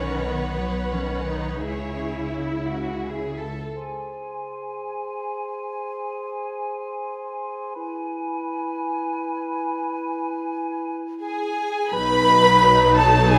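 A soft, intimate chamber violin section carries the melody of this cinematic, emotional film score, played close with light vibrato, a gentle attack and a sul tasto touch. The mood is longing and bittersweet, moving in 3/4 with a rubato feel at 83-91 BPM, and the passage is cut from a longer piece. Beneath it, a second violin line, violas, cellos and double basses form a lush, expressive string body with vibrato, the violas and cellos gliding with portamento from further back. At 3.8 seconds the strings give way to woodwinds: an airy, hollow small flute group up front, a dark cor anglais with a smooth top, and a solo clarinet in classical style, each carrying a second line as the chords move from G# to E. The strings return near the close, joined at 11.9 seconds by a very quiet, shadowed French horn section holding sustained chords as the harmony settles on B, set in a moderate scoring-stage reverb.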